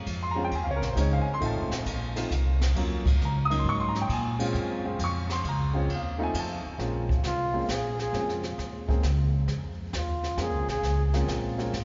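A breathy, mellow flugelhorn enters at 7.3 seconds to play the solo melody, bending in on scooped notes with vibrato and a smooth top. This is cool, late-night small-group jazz in a swing and bop style, set at 134 BPM in 3/4 with swung eighths and pitched in B-flat minor. The pizzicato upright bass sits up front with a woody, steel-strung tone, and a warm baby grand piano accompanies with an open, long-sustaining sound that is also close in the mix. A brushed drum kit with a high-tuned snare, a boomy kick, hi-hat and ride keeps time, with a small-room character of its own. The ensemble is recorded in a church or concert hall with a wet cathedral reverb and a darkened top end, and the chords move through Bbm7, F7 and Ebm7 in this fragment cut from a longer piece.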